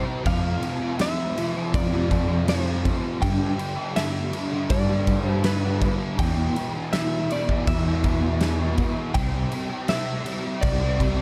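A steady, straight 4/4 pulse at 81 BPM carries this short shoegaze and dream pop cut in C major, its mood blissful and wistful. A big rock drum kit and fuzz-toned fingered bass enter at 0.3 seconds, the kit acoustic and airy with bright crash cymbals, a fat snare and a punchy kick set up front, while the bass growls low with overdrive. From the first moment, a double-tracked fuzz guitar drives a thick, compressed riff through its distortion and ensemble chorus, sitting prominently in the mix. Above it, a direct-recorded clean electric guitar picks a bright, scooped melody touched by subtle chorus and digital delay. The harmony moves through F5, G5, Em and C across the passage, wrapped in a dark, warm production with small room ambience.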